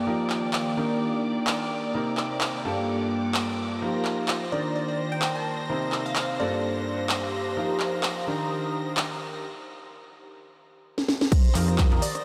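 A woody upright piano riff leads this uplifting, joyful piano house clip, its lush chorus, tape echo and sidechain pumping sitting over smooth bowed violin chords and a warbling, nostalgic tape-like pad, all cycling through Ebmaj7, Cm7, Gm9 and F9sus4. An overdriven house kit with a cracking snare, handclaps, hi-hat, rim click and shaker drives the groove, while a glassy wavetable pluck adds a brief melody from 4.5 seconds. After a break from 9.4 seconds and a drum fill, a punchy overdriven kick arrives at 11.3 seconds, followed by a funky, saturated analog bass at 11.6 seconds, the whole dreamy mix soaked in huge ambient reverb.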